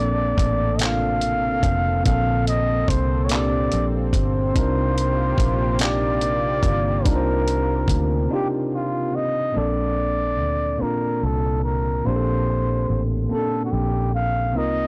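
A slow, straight six-eight pulse at 48 BPM carries this sensual, tender R&B fragment in Bb major. A gritty, compressed sampler-style soul kit of thumpy kick, hi-hat and handclaps sits up front until it drops out at 8.1 seconds, just before a brief break. A dark, round, foam-muted electric bass with tube saturation holds the low end, also forward in the mix. A worn, slightly out-of-tune tine electric piano heard through a combo amp supplies the accompaniment as the harmony moves from Bbmaj9 to Cm11 and back. A detuned sawtooth analog pad with chorus and a slow attack sustains chords until 9.5 seconds, while a breathy, whispered flugelhorn carries the melody out front with vibrato, scooped notes and an intimate pop delivery. The recording as a whole is blown-out and overdriven, with light reverb lending a modest sense of space.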